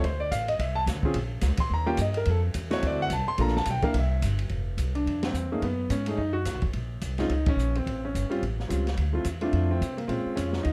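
Swinging briskly in 4/4 at 214 BPM, this playful jazz piano trio features an intimate grand piano with long sustain, audible action noise and plate reverb carrying the melody over a woody, pizzicato upright bass and an open acoustic drum kit with dark cymbals, a high-tuned snare and a boomy kick, with band accents at 5.2 and 7.4 seconds in a warm, lightly reverberant mix.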